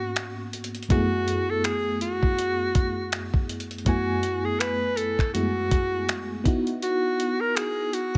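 Set in a digital ambience, this moody, longing contemporary R&B fragment at 81 BPM moves in 4/4 with a 16th-note swing as a breathy alto saxophone with vibrato and delay carries the melody over a dark, full-bodied FM electric piano with tremolo and a noise layer, moving through G#m11, F#m11 and a rootless C#m11, while a gritty, compressed sampler-style drum kit with a thumpy kick, hi-hat and finger snaps, re-recorded in a small room, enters at 0.2 s.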